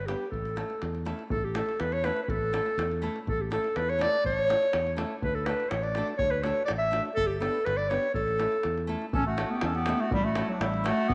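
A straight two-beat pulse drives this exuberant, wild Balkan wedding-band tune, where a deep, vintage-sounding, band-limited davul and a direct fingered electric bass sit under a small, fingerpicked nylon-string guitar moving through A, D and G. Up front, a warm, classical-style solo clarinet carries the melody with a slapback echo, and a reedy, airy accordion joins on a second line at 9.1 seconds as the opening theme returns. The whole band sits in a wet echo-chamber reverb, and the passage is cut from a longer piece.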